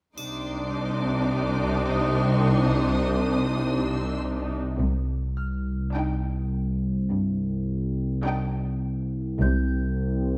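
An evolving, detuned analog drone with chorus sits up front on a low C from 0.6 s, anchoring this uneasy, mysterious excerpt of a cinematic suspense score in C minor at a slow 52 BPM. Bowed cello and soft-attack double bass sections hold the bass, and an expressive viola section with portamento fills the middle over a Cmadd9 chord. A close, rich high violin section and a quiet, bright triangle sound alongside them from 0.2 s, a ringing fingerpicked concert harp enters at 1.9 s, and a focused, smooth-topped violin section takes the melody on G5 at 5.9 s, all set in a wet stone-room reverb.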